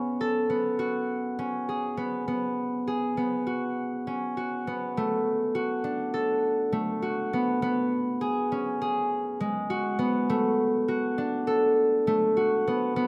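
Contemporary instrumental for solo concert harp in an urgent, hypnotic 9/8, the fingerpicked harp sitting up front with a ringing, warm tone captured by close, detailed microphones and light reverb, moving through suspended and minor-seventh chords across this short excerpt cut from a longer piece.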